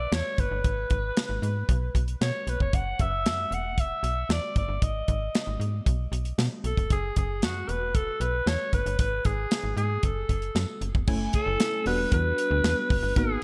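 A straight 4/4 groove at 115 BPM drives this late-night, danceable early-eighties boogie funk fragment, where a tight, dry funk drum kit and a snappy, metallic slap-like FM bass sit up front beneath a raspy, growling alto saxophone melody trailed by diffuse ambient delay, until a glassy, bell-like FM electric piano with chorus and phaser joins at 11.1 s, in a dreamy mix soaked in plate reverb.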